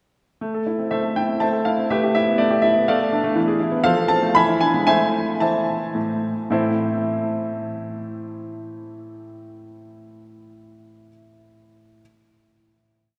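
Restless and serious, this short classical-period piano sonatina in A minor moves in 3/4 at roughly 108-126 BPM with a rubato feel, slowing down from 2.6 to 6.5 seconds before settling on a final chord at 6.5 seconds. A clear grand piano plays solo from 0.4 to 12.0 seconds, up front, with a smooth, vintage tone and short sustain, carrying a tune over chords and a broken-chord bass that range from A2 to B5. The piano sits in a wet cathedral reverb with a long 4.2-second decay, and the harmony passes through A minor, E minor over A, D minor over A, E, F and E7 before returning home to A minor.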